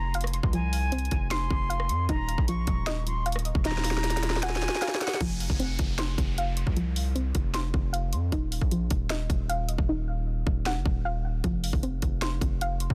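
This excerpt opens with an airy, distant jazz flute carrying a second line in its warm, vibrato-laden upper register, set over a soft, round synth pluck playing dark arpeggios through chorus, delay and a low-pass filter, while a distorted 808-style bass rumbles underneath. A trap drum kit arrives at 0.1 seconds with a hard-clipped kick, sharp snare, rim click and bright hi-hats, all overdriven and pushed up front at 154 BPM in a half-time feel. The mood is menacing and melancholic, moving in F phrygian from Fm to Ebmadd9 before a drum fill leads into the second part. At 5.2 seconds the flute stops, a downlifter falls in the background, the harmony shifts to bare F5 chords, and a filter sweep runs across the pluck for the rest of the piece. The hi-hats drop out briefly around 9.9 seconds, while the saturated, heavy bass and the rest of the kit press on in a dry, dense and heavily limited mix.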